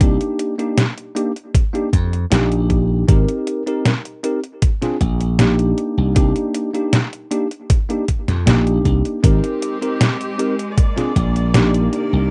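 A punchy, amped slap bass sits up front through this melancholic, nostalgic vaporwave excerpt, bright against a straight 4/4 pulse. A bell-like tine electric piano carries the accompaniment with clean, direct chords through analog chorus and delay, moving from a rootless Cm9 through Abmaj9 and Bbadd9 before returning. Alongside them, a detuned 8-bit digital drum machine supplies hi-hat and a fat snare, while a thumpy electronic kick drives the beat, both up front, roughened by vintage 12-bit sampler grit and tape-warm. At 9.2 seconds a clear studio string section enters quietly with sustained bowed chords, earthy and biting with light vibrato, as the harmony shifts to Abmaj9 and then Bb9. The dry, rough home-demo mix has a cassette-tape character that deepens the wistful mood.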